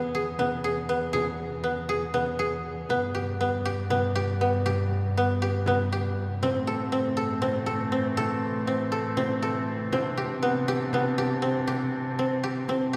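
Set in a straight 7/8 at 239 eighth-note beats per minute, this playful, hopeful fragment of contemporary chamber music opens with woody, fingerpicked koto arpeggios up front over a dark, boxy bowed cello bass with vibrato, joined by a small, bright frame drum sitting very quietly from 0.4 seconds and a clear, distant woodwind section holding tight sustained chords from 6.4 seconds, the harmony moving from E through G and Am to Cadd9 inside a long cathedral-like reverb.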